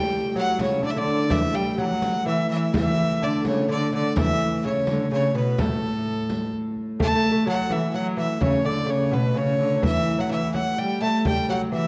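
A clear, biting fiddle carries the melody with light vibrato over a delicate fingerpicked lute, a reedy, nasal viola da gamba and the distant, woody drone of a hurdy-gurdy in this rustic, festive medieval dance in 3/4 at 127 BPM in A mixolydian, where a deep, close frame drum enters at 0.4 s and a very quiet riq with bright jingles drops out at 6.5 s, all set in a dark production with a reverberant recital-hall sound.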